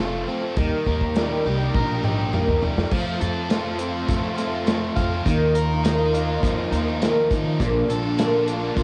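Jangly and nostalgic, this short folk rock and heartland rock clip moves at a straight 102 BPM in F mixolydian, with a shimmering, octave-doubled twelve-string acoustic guitar picking in the background, a biting, double-tracked overdriven electric guitar riff, and a pizzicato upright bass with a woody, tube-saturated tone. A natural country drum kit with dark cymbals and a punchy kick joins at 0.6 s and plays a fill from 1.7 to 2.9 s, while the harmony moves from F to Eb, then returns to F at 2.9 s before passing through Ebsus2 and Bbmaj7. Behind it all, a lush, bowed studio string section holds sustained chords with vibrato, and the dry home cassette recording gives the whole a homespun feel.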